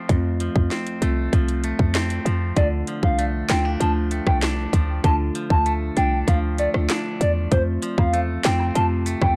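Tough and bouncy, this dancehall excerpt opens on a bright, twangy clean electric guitar picking arpeggios, joined almost at once by a mellow soft-mallet marimba, a punchy short 808-style bass and an up-front island pop drum kit with a tight kick, sharp snare, metallic hats, rim clicks and handclaps. At 2.6 seconds a hollow, woody clarinet-like synth lead takes the melody, its tone carrying chorus, vibrato and digital delay, while a cabasa and woodblock slip in quietly in the background from 7.8 seconds. A dark digital ambience gives the production a warm cast.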